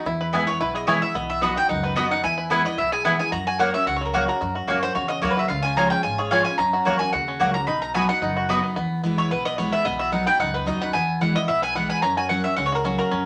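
Bluegrass in a straight four, virtuosic and joyful, this short cut from a longer piece has a twangy, fingerpicked banjo carrying the melody over a full-bodied dreadnought guitar and a dark, woody pizzicato upright bass. Two mandolins sit up front: one bright mandolin adds stabs until 8.6 seconds, while a second, warmer mandolin plays melody almost to the close. The ensemble shares a wet studio reverb, and a steady chord cycle around E, B and F# repeats as the section returns at 8.8 seconds.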